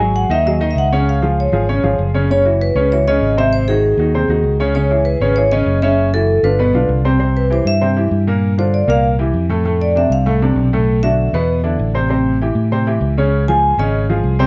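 A ringing vibraphone with medium mallets and slow motor vibrato opens this sunny, sophisticated Afro-Cuban jazz excerpt in straight 4/4, carrying the melody through plate reverb over a smooth, vintage grand piano and a round, dark, amped fingered electric bass sitting up front. At 7.2 s the harmony settles into a new section and the vibraphone takes a solo, its metallic tone ending at 13.9 s while piano and bass carry on. The light room sound stays soft at the top.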